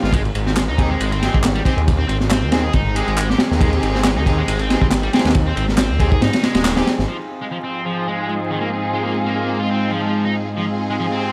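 Breakbeat with an energetic, raw swing, cut from a longer piece: a crunchy, saturated drum kit with a tight kick, high-tuned snare and dark cymbals drives up front beside a thick, menacing detuned saw bass, while layered, tape-warm electronic handclaps and a bright, double-tracked distorted guitar riff with delay sit further back. Clear, lush bowed string stabs with vibrato enter early, and the band hits an accent at 6.7 seconds as the claps fall away, before the drums and bass drop out at 7.1 seconds. A deep, moody analog pad with chorus, 12-bit sampler grit and sidechain pumping then joins the guitar and strings beneath filter sweeps on the pad and strings, all under light reverb and vinyl crackle.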